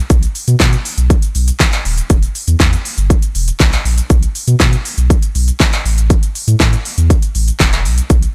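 A straight 4/4 groove at 120 BPM drives this energetic, bittersweet dance-pop fragment, cut from a longer piece and tuned to A4 = 439 Hz, with a punchy pop drum kit of kick, fat snare, crisp hi-hat, handclaps and shaker sitting up front, its electronic, layered sound re-recorded in a small room. From 0.1 s to 8.3 s a deep, round sine sub bass moves between D#1 and B2, its fast attack and sustained tone pumping under a sidechain. The mix is dry, with little reverb, and blown-out and overdriven.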